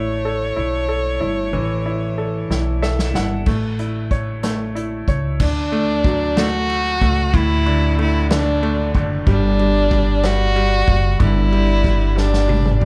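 Violin, upright piano and upright bass open together on this tender, swaying pop ballad in six-eight, the single bowed violin carrying the melody with a rich, focused vibrato and a touch of slapback echo over the bright, intimate piano, whose action noise can be heard, and the woody, dark pizzicato bass, all three sitting up front. At 2.5 seconds a piano fill and a drum fill lead in the acoustic kit, played with bundle sticks and sounding distant and roomy, with dark cymbals, a punchy kick and a medium-tuned snare. The drums fill again at 12.2 seconds, and the room stays dry with little reverb in this cut from a longer piece.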